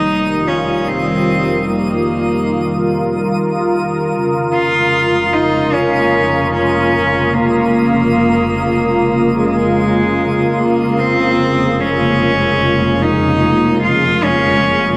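A huge, wet reverb with a long decay bathes this melancholic, reflective ambient passage in free time, cut from a longer piece. Up front, a single bowed cello carries the melody with a rich, pure sul tasto tone and a soft attack, floating and distant, its line trailed by a diffuse ambient delay. Beside it, an analog pad of detuned sawtooth waves holds smooth, sustained chords under chorus, moving from Ebadd9/F to Bbm7/F at 4.1 seconds. Beneath, a dark studio double bass section bows a low F with expressive vibrato and portamento, fading in across the full 15 seconds. In the background, a twinkling granular texture with FM sparkle and an octave-up shimmer rings high in its own reverb, slowly fading out over the same span.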